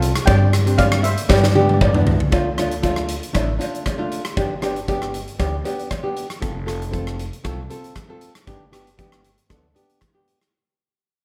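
A festive, bouncy calypso at 117 BPM opens with shimmering double seconds steel pan played with hard rubber sticks in a boxy small room, stopping at 2.0 seconds, over an up-front, dark, fingerpicked nylon-string guitar, a woody, thumpy pizzicato upright bass on gut strings and a punchy, big-room arena drum kit whose fill at 1.3 seconds leads into a long fade-out from 2.3 seconds, while a vintage, band-limited cowbell plays in the background through chords moving from Gsus4 to G, Dm and F in light reverb.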